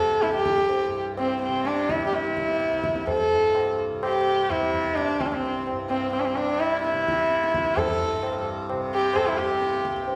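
Hindustani classical music in raga Bhupali on C, tuned to A4 = 438 Hz, devotional and radiant, moving in a straight 5/4 at 128 BPM and speeding up throughout, as an intimate, up-front sarangi carries the melody with gliding portamento, light vibrato, a soft attack and an airy bowed tone ringing with sympathetic strings, over a softly plucked, buzzing, shimmering tanpura drone and low-tuned, ringing tabla with a vintage, band-limited sound that enters at 0.2 seconds, heard in a reverberant recital hall in this fragment of a longer piece.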